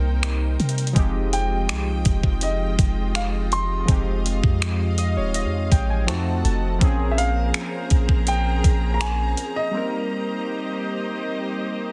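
An overdriven drum machine with vintage 12-bit sampler grit sits up front in this sensual, late-night contemporary R&B excerpt at 82 BPM, its thumpy kick, finger snaps and hi-hat riding over a deep, boomy 808-style bass that runs until about 9.3 s. Round, detuned analog keys with chorus and a filter sweep carry the accompaniment, a close, bowed string section holds smooth sustained chords, and from 1.3 s an intimate grand piano with delay and audible action noise plays the melody over chords moving from Cm7 through Fm9 and F7b9 to Bbm9. A synth keys fill arrives midway, and a break at 9.7 s leaves keys, strings and piano in a digital ambience, all within a dense, heavily limited master.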